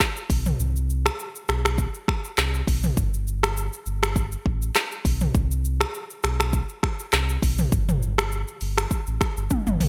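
This afrobeats track moves at 101 BPM in 4/4, with a gentle 16th-note swing that gives it a sunny, romantic feel in this brief cut from a longer piece. An electronic deep house drum kit sits up front, a layered, produced blend of kick drum, hi-hat, shaker, finger snaps, handclaps, rim click and toms, with a deep kick, dark hats and gated reverb. The kick drops out between 0.6 and 1.8 seconds, and a drum fill closes the passage at 9.5 seconds. Almost from the start, a full, sine-toned sub bass doubled at the octave holds sustained notes between G1 and C2, each with a fast attack. Light reverb and a bright, 1980s-style digital production polish the sound.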